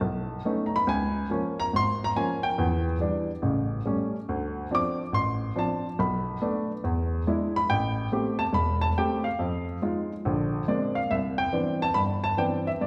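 A baby grand piano plays solo jazz in C major, intimate and up front, with audible action noise and a short, natural sustain that gives the sophisticated, relaxed mood a close, unvarnished feel. The swung 4/4 at 141 BPM moves through a chain of seventh and extended chords, from B9 and Em7 to A7 through Bm7, E7, Fm7 and Bb9, spanning E1 to D6. The piano then settles onto a Cmaj9 at 11.1 s as a new section opens, all bathed in a wet recital-hall reverb before this brief cut from a longer piece ends at 12.9 s.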